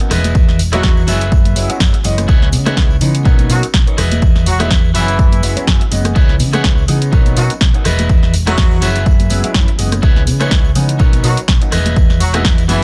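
This groovy, nostalgic slice of filtered disco house opens with a clear concert grand piano, its long-sustaining chords with deep low end running through a phaser and sidechain pumping. Alongside it, a twangy electric guitar plays a fingered riff at the edge of break-up, and a layered house kit adds a punchy snare, rim clicks and bright hats that pump with the sidechain. Within the first fraction of a second, a dark, round hollow-body bass arrives, with acoustic congas and tambourine tucked into the background. A punchy analog kick enters at 0.3 seconds and sits up front, re-recorded in a large room. From 0.7 seconds, a horn section carries the melody in octave doubling, with light vibrato and vintage 12-bit sampler grit. The whole mix stays dry and swung, cycling through the same lush Emaj7, F#9sus4, C#m7 and Bmaj9 progression.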